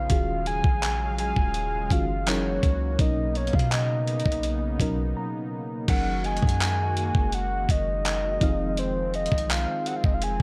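Sensual and late-night, this dry contemporary R&B excerpt at 83 BPM sets a round, octave-layered synth lead with chorus and slapback echo over a warbling, tremolo-tinged FM electric piano, a smooth detuned sawtooth pad and a deep, boomy 808-style bass, while an up-front, gritty, overdriven sampler-style kit of thumpy kick, hi-hat, handclaps and crash drives chords from Ebm11 toward Fm7; the electric piano plays a fill from 4.8 seconds into a short break, and an inharmonic, phased synth chime rings in the background from 6.2 to 7.7 seconds.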